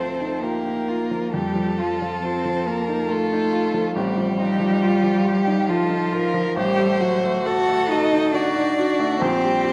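In a rubato 3/4 at about 68 BPM, this slow, romantic classical movement for piano quartet unfolds with a melancholic, yearning mood in a brief passage cut from a longer piece. A clear, focused solo violin carries the melody with vibrato, while a second violin, warm and smooth at the top, bows an inner line beneath it. A rich cello, even and steady with its own vibrato, sings a second line that sits slightly forward of the violins. The baby grand piano supplies a polished, present accompaniment up front, reaching down into its low register. The harmony drifts from Bb/D through F and F/A to a D7/A at 6.6 seconds before settling on Gm/Bb, all set in a moderate scoring-stage reverb with a dark overall production.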